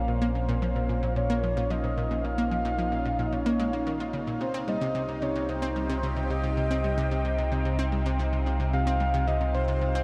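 Expansive and cosmic, this sequencer-driven space music moves at 111 BPM in a straight 4/4, tuned to A4 = 445 Hz, with a swirling, evolving phased analog pad sustaining chords that shift from Bbm to Cm at 4.4 seconds while a bright, round analog pluck repeats a detuned sawtooth riff through chorus, delay and shimmer reverb. A deep sine sub bass sits up front beneath them, and a very quiet, resonant stepped-filter texture bubbles in the background. From 0.1 seconds, a soft octave-layered synth lead sings a full, vibrato-tinged melody, all inside a huge reverb and a dark production in this excerpt of a longer piece.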